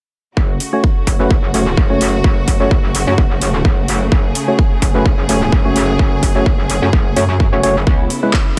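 A punchy, overdriven electronic kick drives this gritty, aggressive bass house fragment at 128 BPM in F# minor, joined by a saturated, metallic wobble bass with chorus, a hollow, organ-like percussive stab carrying delay and a filter sweep, big-room handclaps and metallic hi-hats, and a rich, bowed string section holding sustained chords that pump with the sidechain over F#m before shifting to C#m7 at 7.9 seconds.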